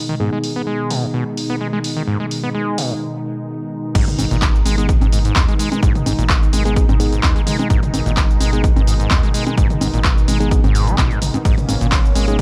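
A lightly swung 4/4 groove drives this hypnotic, raw acid house cut, taken from a longer piece. A detuned sawtooth pad with a slow attack holds a sustained minor chord, its warbling tone shaped by subtle chorus and sidechain pumping while a filter sweeps across it through the opening section. Over it, a squelchy, resonant acid bass riff snarls with tube saturation and analog delay, and a mellow tine electric piano adds stabs from the background, roughened by vintage 12-bit sampler grit, a low-pass filter and its own analog delay. A dry analog drum machine fills in congas, handclaps, hi-hat, shaker, toms, and crash and ride cymbals under studio reverb, before a short break at 3.0 seconds. The drop lands at 4.0 seconds, when a round sine sub bass pumps deep beneath the mix and a punchy electronic kick arrives, all within a mostly reverb-free sound.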